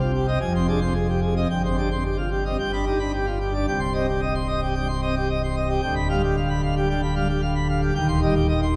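In a straight 4/4 pulse at 112 BPM, this majestic, stormy fragment of a classical organ toccata in C minor features a solo pipe organ on full plenum with mixtures, its brilliant, romantic voicing spanning C1 to C6 and sitting up front, while a wet cathedral reverb with a 4.3-second decay sets the listener further back in the room as the harmony moves from Fm7 through G7/D to land on Cm/Eb at 8.0 seconds.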